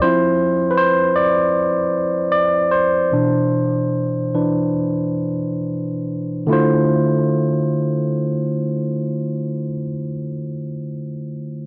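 A barky, clean tine electric piano plays alone through a combo amp, up front in this sultry, introspective R&B fragment, easing into a slowdown over its first 6.5 seconds as it moves from Dm9 to Cmaj9 and back, all heard through light reverb, studio ambience and the warbly pitch drift of worn, old cassette tape.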